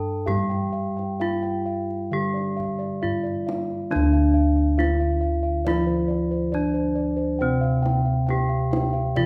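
In a straight 4/4 pulse, this serene, ceremonial Javanese gamelan excerpt pairs an up-front, ringing bronze metallophone melody struck with a horn mallet against a mellow, close-miked metallophone accompaniment played with padded disc mallets, while round, beating bossed gongs carry arpeggios and a soft bass line under padded beaters, a deep kendang joins in the background at 0.3 s, and a recital hall reverb surrounds the ensemble.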